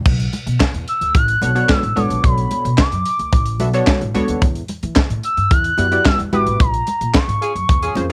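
A dry, cassette-recorded home take of danceable, late-night early-eighties boogie funk sets a tight kit with high-tuned snare, handclaps and crash against a woody, thumpy upright bass and bright background congas, while a gliding portamento lead with chorus and phaser enters at 0.9 seconds, joined at 1.4 seconds by a punchy, detuned sawtooth polysynth comp, and a mellow, distant horn section slips in at 7.4 seconds during a band accent that runs from 6.6 seconds in this cut from a longer piece.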